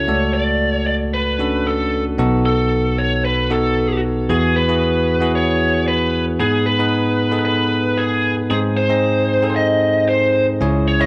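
A straight 4/4 pulse at 114 BPM drives this short pop fragment, cut from a longer piece, with a dramatic yet nostalgic mood and tuning set to A4 = 442 Hz. A bell-like tine electric piano carries the accompaniment throughout, clean and direct, spanning B1 up to D#5 and sitting up front. Over it, a biting, picked electric lead guitar plays the melody between G#4 and D#5, its overdrive and digital delay lending a bright edge as it shares the front of the mix. The harmony moves from Dmaj7/C# to B7, and a new section at 4.3 seconds brings Eadd9, G#m and finally G#. A light reverb gives the recording a modest sense of space.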